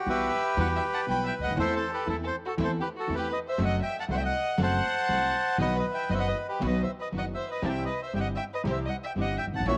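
Tango at 119 BPM in 4/4, played with a rubato feel, this sultry, tense excerpt is cut from a longer piece. A reedy, up-front bandoneon carries the melody from the very start, ranging from F#4 up to B5. A chamber violin section with a gut-string, period-style tone bows a second line just beneath it. A concert grand piano with audible action noise and deep bass supplies intimate accompaniment, while a woody, growly pizzicato upright bass anchors the low end. Far back in the mix, a bright symphonic string section adds very quiet, intense stabs with light vibrato. The harmony moves from Emadd9 through Am/E, F#dim and B to C, all set in a small, lightly reverberant room.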